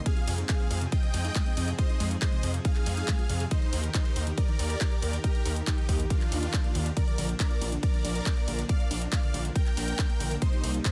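Uplifting and soaring, this short cut from a longer uplifting trance piece moves in a straight 4/4 through Fm7, Eb and Bb chords. A huge, euphoric supersaw lead carries the melody with an airy, detuned brightness, while a lush pluck plays arpeggios in the background with a tape-worn character. Behind them, a thick, warbling pad with a vintage chorus holds sustained chords, and the pad, lead, pluck and bass all pump with sidechain compression. A gritty, nasal synth bass sits up front from 0.3 seconds, aggressive and saturated. The drums hit hard, with a punchy, overdriven electronic kick leading the mix alongside a layered kit of handclaps, hi-hat and ride cymbal, all set in a digital ambience.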